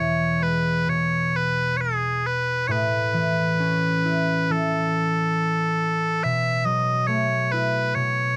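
A Celtic slow air in E major opens with bagpipes and concert harp sounding together from the first moment, both placed up front in a dry, close recording with a 1970s studio character and a faint layer of vinyl crackle. The bagpipes carry the melody in a bright, piercing, continuous voice, playing solo in the range from G#4 to E5. Beneath them, the concert harp supplies a fingerpicked accompaniment with a ringing, warm acoustic tone, reaching from E2 up to E4. The pace drifts freely around 63 to 71 BPM in 4/4, and the harmony moves from E to A at 2.7 seconds and settles on B7sus4 at 6.2 seconds. The mood is nostalgic and tender, and this brief passage of about 8.4 seconds is cut from a longer piece.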